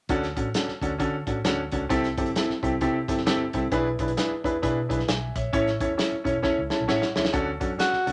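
A swung 132 BPM groove in 4/4 drives this joyful, uptempo 1960s-style soul cut in D major, where a clear, intimate grand piano with audible action noise carries the accompaniment over a dark, round, foam-muted fingered electric bass and a tight-kicked soul drum kit with a rolled-off top, both kit and piano adding fills from 6.4 to 7.3 seconds before a scooped, vibrato-laden tenor saxophone slips in at 7.8 seconds, all set in a small room.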